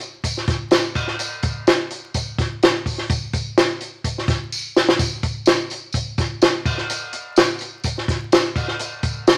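A jingly, bright tambourine opens this straight, danceable soul groove in four, sitting lower in the mix, and a compact cocktail drum kit joins it a moment later, dry and up front with a punchy kick, high-tuned snare, hi-hat and dark crash cymbals, with a drum fill at 4.5 seconds, all in a warm fragment of a longer piece coloured by moderate studio reverb and vinyl crackle.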